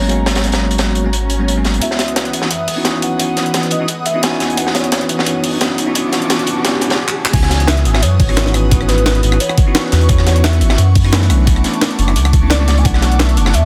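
Liquid drum and bass at 174 BPM in C# minor, this lush, melancholic excerpt from a longer piece opens on a G#m11 chord, with a bell-like, clean tine electric piano, an airy, breathy pad carrying chorus, phaser and sidechain pumping, and a smooth, dark sawtooth synth bass sitting up front. A velvety, detuned synth lead with chorus, delay and vibrato sings its melody mellowly in the background, while a crunchy breakbeat kit of saturated, rolled-off hi-hat and high-tuned snare ticks along beneath. At 1.8 seconds a gritty, pitched-up jungle sampler-style kit joins with claps, rim clicks, crash and tape-tinged snare, and the build-up begins, with a filter sweep on the electric piano and a very quiet electronic riser over C#m11 moving to Bm11. A drum fill at 7.1 seconds leads into the drop at 7.3 seconds, where an overdriven, knocking electronic kick comes in as the harmony returns to C#m11 and later Bm11. 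Light reverb and a dense, heavily limited modern master give the track a polished finish.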